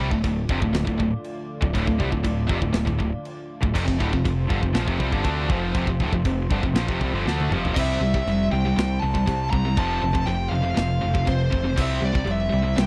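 Heavy metal at 120 BPM in 4/4 with a dark, relentless mood, this excerpt opens with two bright, distorted picked guitars riffing over a growling overdriven bass pushed up front and a tight, gritty acoustic kit with a medium-tuned snare, crash and china cymbals and toms, while a deep, detuned sawtooth analog pad with chorus sustains moody chords in the background. After a drum fill at 7.3 seconds, the harmony moves from Dm and F5 to a C and F progression, and a dark high-gain lead guitar enters at 7.7 seconds with a melody colored by slapback echo. The sound is dry and close, in the manner of a 1970s studio recording, with the kit's top end rolled off.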